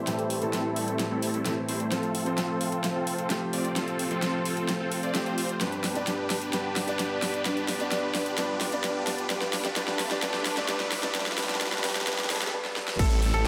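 Set in a moderately lush hall reverb, this anthemic festival progressive house build-up at 130 BPM opens with a dark, mellow baby grand piano and a thick detuned unison pad tucked in the background, both pumping against the sidechain, while huge, bright supersaw chords, laced with phaser and dub echo, push through a filter sweep over Am7, F, G and Dm. An up-front big-room drum kit with a huge snare, metallic hats, handclaps, finger snaps and crash runs fills throughout, and a very quiet riser and downlifter creep in at 8.1 seconds. After a short break, a new section arrives at 13.0 seconds with a punchy electronic kick, a menacing, beating detuned saw bass and a brilliant, worn concert grand piano playing arpeggios.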